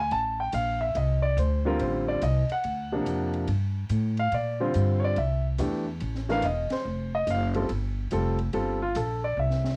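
A clear concert grand piano and a woody upright bass open this swinging, sophisticated jazz piano trio excerpt, cut from a longer piece, at 143 BPM in 4/4 with a swung eighth-note feel. The piano carries the melody from C3 to A5, sitting up front with deep bass and a natural tone, while the pizzicato bass on gut strings plays a thumpy line from E1 to Bb2, also close to the ear. An acoustic jazz drum kit joins at 0.1 seconds, lower in the mix, with dark cymbals on hi-hat and ride and a high-tuned snare, its sound colored by cassette tape in a studio room. The harmony moves from F6 through F13/A, D7alt, Gm7 and C69 to Fadd9 and back to Gm7. The band hits an accent together at 6.6 seconds, and a drum fill closes the passage at 9.4 seconds. Light reverb and a home-recorded cassette quality color the whole recording.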